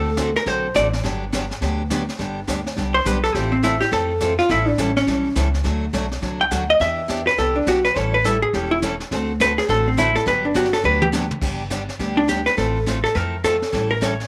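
A cheerful, swinging country western swing piece in G major at 208 BPM opens with a clean, compressed hollow-body electric guitar up front, a bright picked steel-string acoustic guitar and a woody, thumpy pizzicato upright bass on gut strings, joined at 0.2 s by a brushed jazz kit with dark cymbals, a high-tuned snare and a boomy kick; the lead guitar pauses briefly and returns at 2.9 s to solo over chords such as D7, Gmaj7 and A7, and the drums play a fill at 10.8 s, with moderate spring reverb and studio ambience.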